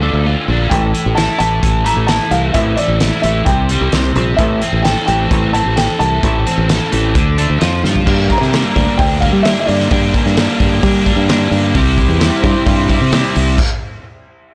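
A straight 4/4 pulse drives this moody, bittersweet indie rock passage, cut from a longer piece. A loose acoustic drum kit sits up front in a pumping studio room, with a punchy kick and fat snare under dark cymbals, and it plays a fill just before the second section begins at 8.1 seconds. Growly fingered electric bass, also up front, anchors two picked guitar riffs: a bright overdriven electric guitar treated with analog chorus and delay, and a clean, twangy, compressed twelve-string set further back. A woody, slightly detuned upright piano with short sustain carries the melody through analog delay until 10.5 seconds, and a deep, detuned analog pad with slow attack and chorus enters in the background near the end. The whole recording has a blown-out sound with light reverb, and the instruments break off at 13.6 seconds.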